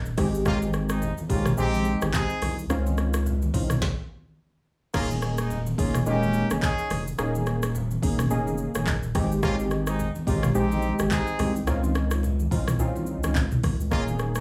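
A light studio reverb frames this sunny, romantic afrobeats cut at 107 BPM in Eb mixolydian, swung on the sixteenths, with a produced electronic drum kit up front (deep kick, woody snare, metallic hats, handclaps, rim clicks, shaker and toms) over a thick, saturated sine sub bass. Round, detuned sawtooth keys with chorus and a filter sweep sit mellow and forward on lush major-seventh and ninth chords, while a clear pop-style horn section with light vibrato carries the second line, and low-tuned, thick-skinned congas played with hard hands sound distant in a large room. The groove halts in a stop from 3.8 to 4.9 seconds before returning on an Eb7sus4 and running on through the cut.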